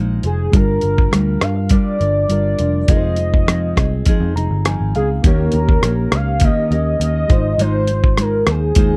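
Wistful and lonely, this short indie and bedroom pop excerpt at 102 BPM pairs a velvety synth lead, lush with chorus and slapback echo, against fingerpicked nylon-string guitar with subtle chorus and warbly pitch drift, a worn, slightly out-of-tune reed electric piano on cassette tape that adds a fill at 4.1 seconds, a round, foam-muted electric bass, and a gritty, compressed sampler-style drum kit of thumpy kick, hi-hat and rim click, all in a dry, close 1970s-style studio sound moving from Ab6 through Gm7, Fm7 and Eb7 back to Ab6.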